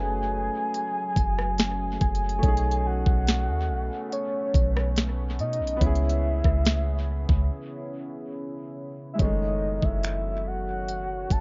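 This slow, longing contemporary R&B excerpt in F# dorian opens with a round, octave-layered synth lead carrying the melody, its tone thickened by chorus, tremolo, vibrato and a dub echo. Beneath it, a clear grand piano plays intimate accompaniment with audible action noise and its own dub echo, while a deep, moody ambient pad holds slow-attack chords that pulse with sidechain pumping and bloom through built-in reverb. A soft, round 808-style bass sits up front with a dark, decaying sine tone. At 0.7 seconds a trap drum kit enters at 71 BPM in a straight 4/4, its knocking kick, sharp snare, crisp hats, rim clicks and finger snaps roughened by overdrive and re-recorded in a small room. The harmony moves from F#m69 through B13 to C#m7, a break arrives at 7.5 seconds, and the harmony returns to F#m69 at 9.2 seconds, all within a dry, echo-heavy mix with a dusky, rolled-off top end.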